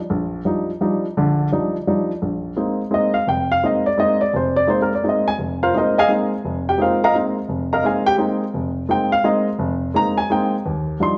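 Open and searching, this brief jazz waltz fragment sets an intimate, up-front baby grand piano alone from 0.1 to 11.2 seconds, its short-sustained notes and audible action noise spanning deep bass to high treble over Ebmaj9 and Bb9sus4 chords with a swung lilt, all bathed in a wet studio reverb and a worn, warbling tape drift.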